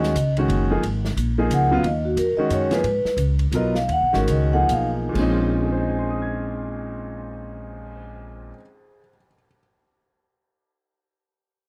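Cool and hypnotic, this modal jazz waltz in Bb minor swings in 3/4 at 125-179 BPM, with a dark, smooth vibraphone (motor off) carrying a ringing metallic solo that begins at 0.8 seconds and slows from 2.8 seconds before the vibraphone falls silent near 4.9 seconds. A clear, up-front baby grand piano with long sustain accompanies on Abm11 and Bbm11 chords until 9.6 seconds, while a woody pizzicato upright bass with steel strings anchors the low end and an airy, polished drum kit adds dark cymbals, hi-hat, a medium-tuned snare, a boomy kick and a cymbal swell. The short cut has the dry, close intimacy of a 1970s studio session.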